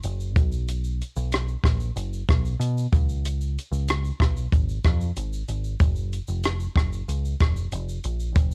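A compact cocktail drum kit and a deep, picked electric bass start together in this short, sunny and hazy bedroom pop fragment, setting a straight indie pop groove in four. The dry, natural kit sits up front with a tight kick, hi-hat, rim click and shaker, while the bass stays low, dark and round, its direct, amped tone close in the mix. A cassette home recording with little reverb gives the whole clip an intimate, close-up feel.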